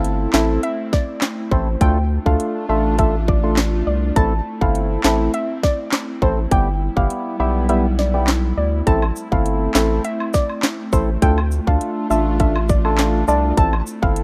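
This rough home demo mix sounds dry, with little reverb, in a short cut from a longer dancehall piece in A minor at 102 BPM with a straight, bouncy and hypnotic feel. An overdriven electronic drum kit sits up front with a tight kick, sharp snare, metallic hi-hats and handclaps, while a saturated sine sub bass holds the bottom, deep and thick. A hollow, nasal organ stab with a wave-folded edge plays the accompaniment through chorus and sidechain pumping, and beneath it an airy, breathy pad with a vintage, warbling, detuned character sustains the chords with the same pumping. On top, a soft, round pluck carries the melody between C5 and A5, dark and gentle, with a filter sweep, chorus and digital delay. The chords move from Am to Dm, back to Am and on to Em/G, the kick drops out from 7.7 to 8.9 seconds, and a compressed, saturated layer of woodblock and cabasa joins at 9.0 seconds.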